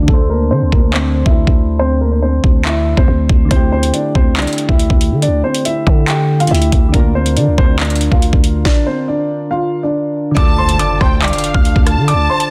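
Drill hip hop in D minor at 140 BPM with a half-time feel, dark and cold, cut from a longer piece: a dark, boxy concert grand with deep bass carries the melody through a low-pass filter and digital delay, over soft, warbling electric-piano-like synth keys with chorus and a filter sweep, while a growling, buzzy 808-style bass sits underneath. A tape-warm drill kit sits up front with a knocking kick, sharp snare, metallic hats, handclaps and rim clicks, following an opening break and a stop at 8.7 seconds, with an electronic downlifter and impact in the background. At 10.4 seconds a distant, lush studio violin section enters with a woody, vibrato second line under delay, all in dense digital ambience and a heavily limited modern master.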